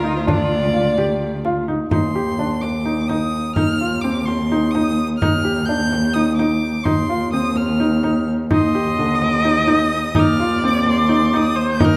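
A rich, focused bowed violin carries the melody with vibrato through this hopeful, playful excerpt of contemporary chamber music in 7/8, while a nasal, up-front viola adds a second line that drops out at 1.7 seconds and returns at 8.5 seconds. An intimate baby grand piano with audible action noise and short sustain plays arpeggios over a dark, expressive cello bass with soft attack and portamento, and a deep frame drum sits close and dry in the background. A wet recital hall reverb surrounds the ensemble, with harmony rocking between Ebmaj7 and F5/Eb.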